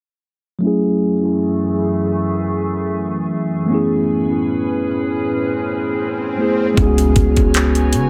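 Contemporary R&B with a longing, moody air, this piece opens at 0.6 seconds on a mellow, up-front tine electric piano with tape echo and a low-pass filter sweep, joined by a glassy, ethereal FM pad holding slow-attack chords through ensemble chorus and built-in reverb. A background electronic swell enters at 5.6 seconds before an impact lands at 6.8 seconds, where a deep, boomy 808-style bass with a fast attack arrives alongside a produced drum kit of knocking kick, metallic hi-hats and handclaps. The echo-heavy mix sits in light digital ambience.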